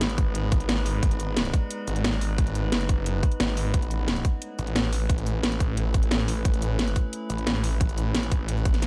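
Aggressive and tense, this short cut from a longer dark technical drum and bass track runs at 177 BPM in a straight 4/4, moving from G#m to Aadd9 at 3.7 seconds. A snarling, detuned sawtooth bass growls low and up front throughout, distorted and overdriven with a fast attack and a moving notch, pumping against the sidechain. The electronic kick drum, tight and overdriven, sits prominently from 0.2 seconds, while the layered kit supplies a cracking snare, bright hi-hats and shaker, also driven hard. Behind them an eerie, metallic FM drone holds sustained chords with a slow attack and long release, thickened by chorus and its own reverb and breathing with sidechain pumping. The whole production sits in a digital ambience.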